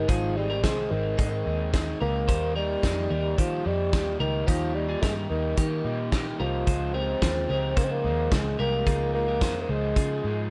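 A straight 4/4 pulse at 109 BPM drives this breezy, nostalgic slice of jangly indie pop, tuned to A4 = 444 Hz and cut from a longer piece. A loose acoustic drum kit, recorded in a small, roomy space, sits up front with a fat snare, a tight kick and hi-hat, playing from 0.1 to 10.1 seconds. Beneath it, a vintage foam-muted picked electric bass gives a dark, round, amped low end. A bright, twangy twelve-string electric guitar plays compressed, clean picked arpeggios coloured by tape echo. A raw garage guitar adds a warm, overdriven accompaniment with tube saturation. Over the top, a mellow bassoon carries the melody in a classical style with light vibrato, as the harmony moves from Ab to Eb at 2.3 seconds, all in light reverb.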